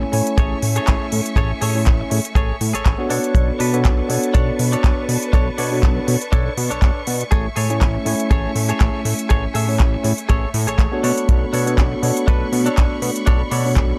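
Opening at once on a clean tine electric piano through a combo amp, pumping with sidechain and trailed by dub echo, alongside lush bowed strings, a twangy direct-recorded guitar riff with subtle chorus and a fat, detuned sawtooth bass, this groovy, feel-good nu-disco excerpt in A major moves at 121 BPM with a lightly swung 16th feel, as crisp hi-hats, handclaps and a dry, tight kick that sits up front from 0.4 seconds drive it over alternating Amaj7 and Bm9 chords in a small room.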